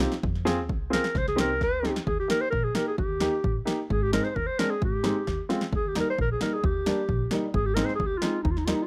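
Dry and close in a 1970s studio manner, this short, festive yet bittersweet klezmer fragment in a straight 2/4 features a mellow, breathy clarinet up front with vibrato, subtone and scooped notes in a jazz-style solo, over a woody, polished upright piano, a pizzicato upright bass on steel strings and a punchy analog drum machine of kick and snare, re-recorded in a small room, that drops fills at 1.8 seconds and from 5.3 to 5.7 seconds as the chords move from Fm and Cm into Eb and Ab.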